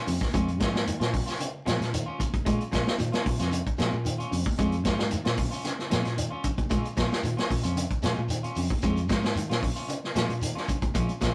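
Afrobeat groove at 113 BPM in 4/4 with a straight feel, sitting on a single Bb minor seventh chord for the whole 11.3-second clip, cut from a longer piece, with a hypnotic, defiant mood. The vintage acoustic drum kit is the most forward part, with a punchy kick, medium-tuned snare and hi-hat, its top rolled off and its tone mid-forward. A fingered electric bass, dark and round with a foam-muted thump, holds the low end between F2 and Bb2. Two picked electric guitars share the chord: one at the edge of break-up plays stabs with a slightly broken-up bite, while a clean, dusky guitar spins arpeggios in the background. Very quiet congas, bright and high-tuned with thin skins struck by hard hands, and a grainy, mellow shekere add texture underneath. The sound is a rough rehearsal-room recording with warm saturation and moderate studio ambience, giving the band a close, lived-in feel.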